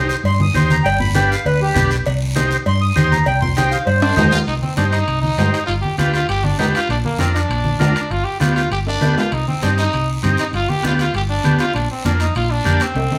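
Passionate, fiery cumbia at 198 BPM in C minor, cut from a longer piece, where a reedy, airy accordion leads up front until 4.3 s before a brilliant, growling trumpet with vibrato takes a gritty solo from 4.5 s over a round, dark hollow-body electric bass, a buzzy vintage combo organ, raspy close guiro, low-tuned hard-hand congas and ringing cowbell and timbales, with occasional drum fills, all set back in a wet studio reverb.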